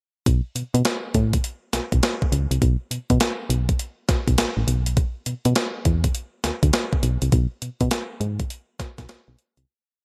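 Brightly produced in a 1980s digital style with light reverb, this slick, bouncy new jack swing R&B piece pairs a hard-swung, sampler-style 12-bit drum machine with a thumpy kick, medium-tuned snare and hi-hat, tape-warm and re-recorded in a small room, against a punchy, round, dark FM bass line, both up front, whose bouncy swung synth-funk figures carry muted ghost notes and chromatic approach notes until the fade-out from 7.3 seconds to the end at 9.7 seconds.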